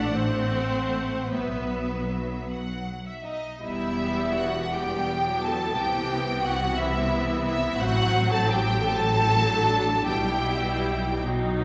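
Set in a reverberant scoring-stage acoustic with the bloom of a church or concert hall, this passage is cut from a longer slow romantic movement for string orchestra in E minor. It moves in a rubato 6/8 at roughly 49-60 beats per minute counted in dotted quarters, and its mood is melancholic and yearning. Up front, the first violins carry the melody in a smooth, even bowed line with vibrato, while the second violins sing a rich second line beneath them. The violas supply a focused accompaniment, the cellos sit clear and distant in the background, and the double basses anchor the bass with a rich, focused, smooth-topped tone. The harmony opens on a diminished chord over A and a suspended B chord before settling into E minor at 3.6 s, then passes through a Cmaj7 and returns to that diminished tension before resting on E minor over B. The violins fall away at 11.2 s, leaving the lower strings to sustain until 11.6 s.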